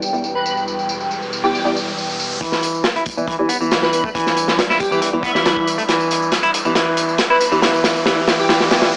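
Up front, a saturated, gritty crunchy breakbeat drum kit with a tight kick and medium-tuned snare drives this energetic, swaggering breakbeat excerpt from 2.4 s, joined at the same moment by a bright, clean picked electric guitar riff roughened with 12-bit sampler grit and tape echo under a filter sweep. An airy, dreamy lead with vibrato and portamento floats over an Em7 bed of a moody analog pad with sidechain pumping and a muted, phased dub chord stab, while an overdriven tambourine runs throughout and a swirling detuned saw bass sounds only until 2.4 s. A background riser builds across the passage toward a drum fill at 5.9 s, all set in a small room with vinyl crackle and a small-speaker tone.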